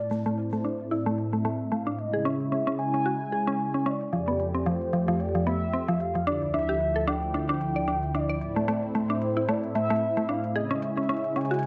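Swung sixteenths in 4/4 drive this glitchy, melancholic IDM fragment, where a velvety, wave-folded synth lead with vibrato carries the melody over a detuned sawtooth pad and a woody, FM mallet-like pluck spinning arpeggios, both filter-swept throughout, while a crisp, tape-toned electronic hi-hat ticks very quietly beneath, inside a moderate digital room reverb.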